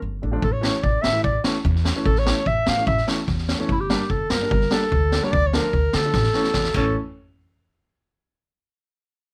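Closely miked and nearly dry, this festive yet bittersweet klezmer excerpt at 147 BPM in A phrygian dominant puts a mellow, smooth-topped classical clarinet up front over a woody upright piano, pizzicato steel-string upright bass and a street-band drum kit with dark cymbals, a high-tuned snare and a boomy kick, moving through A, Gm and Dm before a drum fill at 6.1 seconds leads to a chordless close at 7.0 seconds.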